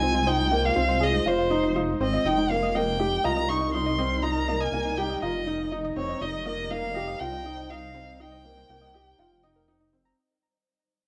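A cassette-hazed home recording in a moderate room opens this melancholic, cinematic excerpt of piano and strings electronica at 121 BPM in 4/4, where a clear, focused violin sings the melody up front over a felt-muted upright piano riff with audible action noise, a dark detuned saw bass rumbling below, a blurred granular cloud pad holding chords in the background, and soft round pluck arpeggios touched with chorus, 12-bit grit and tape echo, moving from Fm7 to Eb/F at 2.2 s as the drop fades out through 10.2 s.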